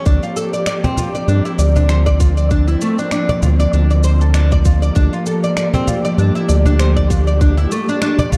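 A lightly swung sixteenth-note groove drives this hypnotic, meditative stretch of organic downtempo. A tight, tape-warm electronic kick drops out at 7.5 seconds, electronic shaker and finger snaps sit low in the mix, and a woody cajon with faint snares joins at 0.8 seconds. A round, deep analog bass sits up front beneath a plectrum-plucked fretless oud playing arpeggios through tape echo and shimmer reverb, while a distant chamber string section holds bowed, vibrato-rich sustained chords with a sidechain pump, and the production stays dark and warm with light reverb.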